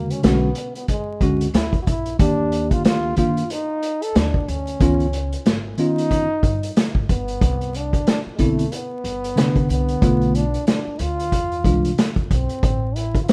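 A breathy, mellow trombone solo with light vibrato and scooped notes leads this cool, warm jazz-hop piece at 92 BPM in a swung 4/4, over a worn, slightly out-of-tune tine electric piano that stops at 11.9 seconds, a woody pizzicato upright bass, and an up-front vintage drum kit with a punchy kick, a medium-tuned snare, hi-hat and a rolled-off top, in a rough home-demo mix with small room ambience and vinyl crackle.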